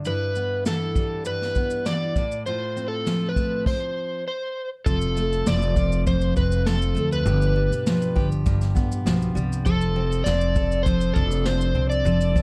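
A full-bodied, picked jumbo steel-string acoustic guitar opens this sunny, carefree acoustic pop passage, taken from a longer piece, joined almost at once by an overdriven electric slide guitar carrying the melody in a fingered, up-front voice. A vintage brush kit recorded in a small room keeps a straight 4/4 pulse with a punchy kick, a medium-tuned snare, a shaker and crash cymbal, its natural sound having a rolled-off top. The harmony moves from G6 to F/A before the band drops into a stop from 3.7 to 4.9 seconds. At 4.9 seconds a pizzicato upright bass with steel strings enters, woody and growly, sitting up front as the second section moves through F, G7 and Dm7/F. Light reverb and a dark, warm production give the recording a relaxed, homespun glow.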